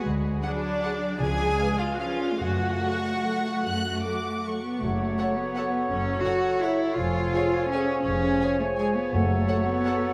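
Bathed in a cathedral's echoing reverb, this festive, elegant classical passage in F# minor moves in a rubato 3/4 between 138 and 182 BPM, with a prominent cello section and a rich double bass section grounding bowed violas and a soft-edged, intimate second violin line. A focused first violin melody with vibrato and a mellow French horn section holding chords in the background enter at 0.4 seconds, while timpani with medium mallets sound distantly underneath. The harmony moves from D through C#7 to F# minor, and from 4.8 seconds the woodwinds join with a clear solo oboe, an airy, close-miked flute section, a roomy clarinet and a mellow bassoon, adding color as the chords pass through C#/E# and return to F# minor.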